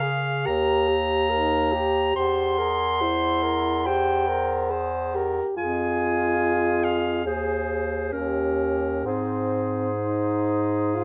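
Lyrical and warm, this classical piece for single-reed quartet unfolds in Ab major at a rubato 62-73 BPM in 4/4, cut from a longer work. A bright, soft-attacked clarinet with a vintage tone carries the melody up front, while a mellow alto saxophone with light vibrato and a smooth top sings a second line. A tenor saxophone fills in the accompaniment and a clear, roomy bass clarinet anchors the bass, all four playing throughout the 11 seconds under light reverb as the harmony moves from Eb through Fm to settle on Ab at 9.0 seconds.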